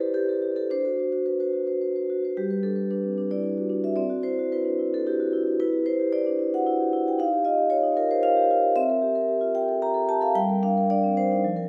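A solo vibraphone, struck with medium mallets and played with the motor off, opens this contemporary classical fragment up front with a metallic, ringing tone that blooms into a recital-hall reverb. The flowing, warm music moves in a rubato triple metre, drifting through rootless chords before settling at 2.4 s into a longer passage that passes through brighter major colours and shades into darker minor harmony. Cut from a longer piece, it ends at 11.7 s.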